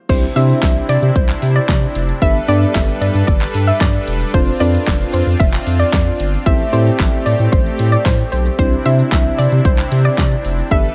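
Set in a digital ambience with a rolled-off top end, this carefree, summery dance-pop drop runs through a Cadd9, Gadd9, Dm7/F and Am7 progression, cut from a longer piece. A soft, round pluck carries the melody with a mellow, detuned, ring-modulated shimmer and chorus, while gentle, warbling electric-piano-like synth keys with a vintage, dark colour fill in the accompaniment, and a smooth, detuned supersaw holds sustained chords underneath. A thick, saturated sub bass carries the bass line, the punchy, layered electronic pop drum kit of kick, fat snare, handclaps, hi-hat, shaker and crash sits up front, and the pluck, supersaw and bass all pump under sidechain compression.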